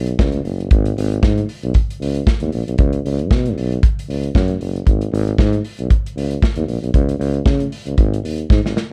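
A close-miked tuba carries the bass line of this danceable, glamorous disco excerpt, its round tone shaded with vibrato and sitting up front. Beside it, an acoustic studio drum kit with a tight kick, medium-tuned snare and hi-hat keeps a 116 BPM groove in 4/4 with a light 16th-note swing, its smooth, dark sound rolled off at the top, before a short drum fill at 8.5 seconds. The production is dry and mellow, tuned slightly sharp to A4 = 443 Hz.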